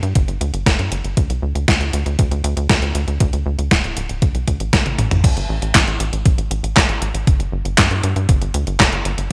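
A bright, 1980s-style digital production with light reverb frames this short, nostalgic and melodramatic italo disco excerpt in a straight 4/4. An up-front, tight sequencer bass with a punchy sawtooth and square-wave filter pluck drives the piece alongside a detuned 8-bit digital drum machine whose overdriven, gated-reverb snare, handclaps, hi-hat, toms and crash sit forward in the mix, while a thumpy, overdriven electronic kick enters at 0.2 seconds. A drum fill at 4.7 seconds carries the groove into a new section at 5.2 seconds.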